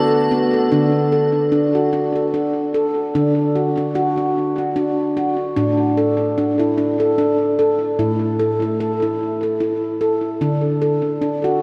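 A ringing, bright handpan sits up front, playing meditative arpeggios with tape echo from the start through 11.6 seconds, its nitrided steel tone carrying the calm, dreamy world piece at 74 BPM in 3/4 with a light 16th-note swing. An icy, crystalline glass pad with chorus holds sustained chords only for the opening 0.7 seconds. The harmony in D major pentatonic moves from D to A5 and back to D, all set in a lush hall reverb that soaks this fragment of a longer piece.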